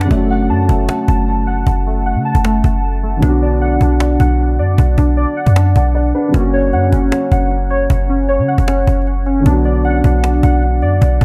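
Hard-hitting and brooding, this half-time trap excerpt at 154 BPM sets a dark, boxy baby grand piano under warbling, detuned lo-fi synth arpeggios with chorus and tape echo, while a deep, boomy 808-style bass sits up front and a woody, close cajon with hard hands drives the beat through F#m, Bm and F# in an echo-heavy small-room mix, the hi-hats muted until 6.3 seconds.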